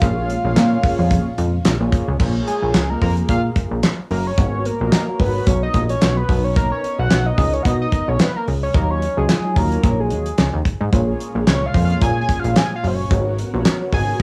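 A dry, damped 70s drum kit with a fat snare, tight kick, hi-hat, handclaps and crash drives a funky, late-night early-eighties boogie funk groove at 110 BPM with a light 16th-note swing, playing from the start alongside a punchy, plucky sawtooth bass up front, dark, brassy synth brass chords in the background, a faint shimmering string machine that drops out at 2.2 seconds and returns at 10.9 seconds, and a fat, detuned analog lead that turns into a mellow, chorused solo with tape echo from 2.2 seconds over Bbm7, Abm11, Bmaj9 and Ebm9, the whole cut carrying the small-room ambience of a home cassette recording.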